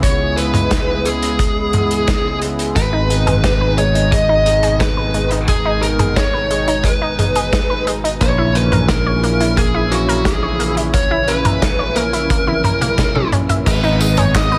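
Over a straight 4/4 beat of a punchy, gritty kick and a loose drum kit with dark cymbals, handclaps, tambourine and gated reverb, this moody, nocturnal synthwave excerpt sets a dark, up-front fuzz lead guitar with delay against a shimmering pulse-width pad that pumps with the sidechain, a growly picked electric bass, and a round, nasal analog pluck arpeggio that enters at 2.8 seconds, with a drum fill at 12.3 seconds before the piece is cut off.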